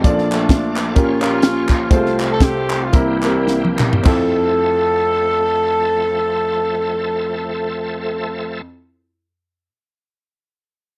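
Uptempo gospel in F major with a swung 4/4 feel, hopeful and soulful, slowing from around 133 toward 100 BPM as a woody upright piano and a bright, shouting tonewheel organ with slow rotary speaker, chorus vibrato and key click carry the chords from Bbmaj7 through Bbm6 and C7 to Fmaj7. A mellow, tight jazz-style horn section sings the melody with light vibrato, while a punchy, polished fusion drum kit with a high-tuned snare plays a fill at 3.5 s and stops at 4.2 s; distant, hollow group handclaps drop out at 4.4 s. The dry, close 1970s-style studio sound keeps the drums, piano and horns up front in this short cut from a longer piece.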